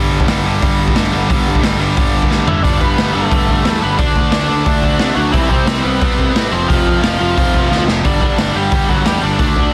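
Dry and dense, this short cut from a longer punk rock track hits hard with a heavily limited, modern sound, rowdy and upbeat at 178 BPM in a straight 4/4 in G major. Two overdriven electric guitars drive the riff from the first second, one bright and biting, the other sitting further back with a warm tone. Beneath them, a fuzz-soaked electric bass adds a dark, round low end. The raw garage drum kit sits up front, saturated and gritty with a boomy kick, medium-tuned snare, hi-hat and toms, and a pumping small-room sound with a rolled-off top. Drum fills at 2.3 and 7.7 seconds mark the turns, and during the first fill a bright, biting lead guitar melody enters at 2.5 seconds as the chords move from G through D and C to F5 before landing back on G5.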